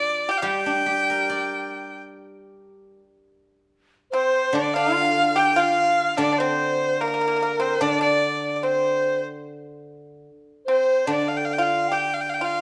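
Chinese traditional chamber music, wistful and graceful, unfolds in a free rubato around 73 BPM in 4/4, cut from a longer piece. A single bowed erhu carries the melody up front with a biting, earthy tone, light vibrato and portamento, while a dry, percussive pipa played with fingerpicks adds a second line beneath it and a steel-string zither supplies silvery, ringing accompaniment. At 4.1 s a large dizi joins in the background on a second line, its pure bamboo voice tinged by a buzzing membrane, tongued and touched with vibrato, and the ensemble sits in the reverberant air of a recital hall.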